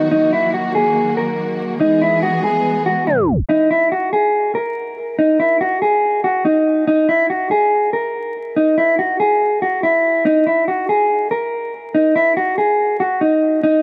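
Vinyl crackle and a roomy hall reverb frame this melancholic, menacing half-time hip hop cut from a longer piece at 142 BPM, where a dark, clean, fingered electric guitar melody sits up front from the start over bowed, vibrato-rich string-section chords moving from Ebm to E, until a tape stop at 3.1 seconds halts the strings at 3.5 seconds and leaves the guitar playing alone to 13.8 seconds.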